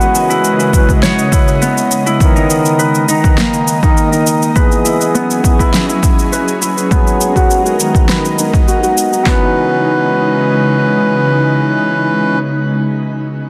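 A punchy, overdriven deep house drum kit sits up front in this hypnotic, meditative organic downtempo excerpt at 102 BPM in C# dorian, its kick, fat snare and handclaps arriving at 0.7 s and dropping out by 9.4 s. Beneath it, a layered electronic shaker and snare drum, also overdriven, runs from the start until 9.2 s. A reedy, breathing hand-pumped harmonium carries the accompaniment close to the listener, pumped by the sidechain and trailed by digital delay and shimmer reverb. A ringing, fingerpicked Celtic harp plays arpeggios through the same filter, delay and shimmer. Both the harp and the harmonium have a filter sweep until 9.3 s. An ethereal, warbling pad of detuned vintage saws and a noise layer holds slow-blooming chords under a lush ensemble chorus, moving through C#m7, Bmaj7, F#9sus4, G#m7 and Bmaj7 before returning to C#m7. The whole excerpt sits in a huge ambient space with a dense, heavily limited modern master.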